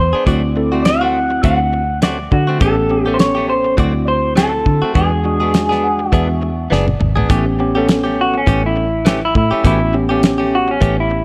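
Straight-eighth soul blues at 102 BPM in 4/4, rollicking yet laid-back, with a light sixteenth-note swing and an A mixolydian color, cut from a longer piece. An electric guitar through a small old amp carries the melody up front, its tone dark, slightly broken-up and lo-fi, while a foam-muted fingered bass sits round and forward beneath it. A direct-recorded clean electric guitar adds compressed, picked stabs, and a worn, slightly out-of-tune tine electric piano with light overdrive, heard through its built-in speakers, fills in the accompaniment over changes moving from D7 to A7, back to D7 and on to E7. The damped 70s drum kit is dry and smooth with a fat snare, tight kick and rolled-off top, and the whole mix sits in light reverb. The electric piano takes a fill from 5.5 seconds, the drums add their own fill just before the turn at 7.3 seconds, and from there the clean guitar steps into a solo over an A7 through to the end.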